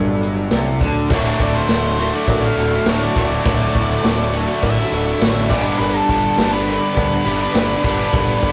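A straight 4/4 groove at 103 BPM drives this swaggering, confident slice of classic rock in D major, cut from a longer piece, with the chords moving from D to G at 5.5 seconds. A vintage drum kit enters at 0.2 seconds, up front with a punchy kick, medium-tuned snare, hi-hat, crash and tambourine under a rolled-off top, while a very quiet cowbell adds a metallic, saturated edge. From the start, a crunchy overdriven guitar plays the riff up front, joined by a scooped, compressed distorted guitar in the background, while a fuzz-soaked picked bass punches underneath. At 1.1 seconds a double-tracked fuzz guitar joins the riff very quietly alongside a woody, boxy ladder-braced acoustic guitar picked on old strings, and an octave-fuzz lead guitar takes a dark solo melody from 1.4 seconds. Deep in the mix, a fat tonewheel organ holds sustained chords through a slow rotary speaker with key click, and a reedy, worn, slightly out-of-tune electric piano adds accompaniment. 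The whole thing sits in a wet small room with tube saturation, giving it the rough feel of a rehearsal-room recording.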